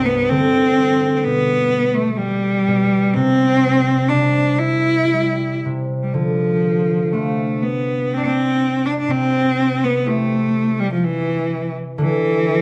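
A bowed cello and a concert harp begin together, opening a mournful, haunting Celtic slow air in D dorian that has been cut from a longer piece. The cello carries the melody between E3 and E4, its single player producing a rich, smooth and even tone with vibrato, placed up front. Beneath it, the fingerpicked acoustic harp spans C2 to G4 with a ringing accompaniment that sits lower in the balance. The pulse is a free, rubato 3/4 around 62 BPM with uneven beats, and the harmony moves from a rootless Am11 through C and Dm7 before settling on Dsus2 at 12.0 seconds, with a new section arriving at 6.1 seconds. A moderate recital hall reverb surrounds the pair, and lossy compression artefacts are audible across the roughly 12.6 seconds.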